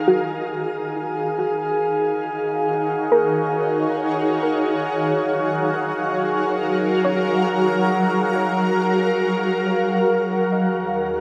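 Ambient in free time and E-flat minor, serene and melancholic, this short cut from a longer piece unfolds in a vast, echoing space with a huge reverb tail. Up front, a shimmering, ethereal pad fades in over the first 10.1 seconds, sustaining chords from Ebm11 to Gbmaj9 with chorus, phaser and octave-up shimmer, while a soft, round pluck traces dark arpeggios in the background and a glassy, pure glass harmonica adds smooth texture. At 10.8 seconds a deep, ominous, rumbling drone with a vintage warble settles low beneath the closing Ebm9 chord.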